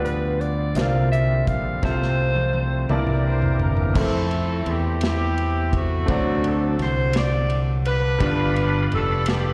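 Hopeful and jubilant, this slow gospel passage in 6/8 opens with a subtoned alto saxophone carrying the melody with vibrato and scooped notes, over an intimate baby grand piano, a bright fingered electric bass up front, and a smooth, dark acoustic drum kit that plays a fill early on. A reedy tonewheel organ with key click, light overdrive and fast rotary speaker holds chords in the background, dropping out after 3.9 seconds and returning at 8.2, while a roomy horn section takes over the melody from 2.9 seconds. Slapback echo touches the saxophone, piano and horns, and the performance is heard as a live gig through the venue's PA in a recital hall.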